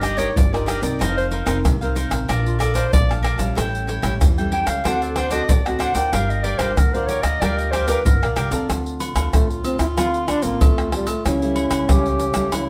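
This samba and choro passage, cut from a longer piece, has a bittersweet, yearning mood and a straight feel. A classical-style clarinet takes the solo for the first 8.7 seconds over a bright, crisp picked cavaquinho and a full-bodied, fingerpicked nylon-string guitar with audible finger squeak. Beneath them, a pizzicato upright bass with gut strings sounds woody, dark and thumpy, while the percussion of egg shaker, deep surdo, pandeiro, tamborim and agogo bells sits up front, close and dry, struck with hard hands. The cavaquinho drops out as the music moves into a new section, and a warm trombone enters at 9.3 seconds as a jazz-style soloist, present in the mix with vibrato and scooped notes. The band plays live in one room, and a moderate studio reverb adds some space.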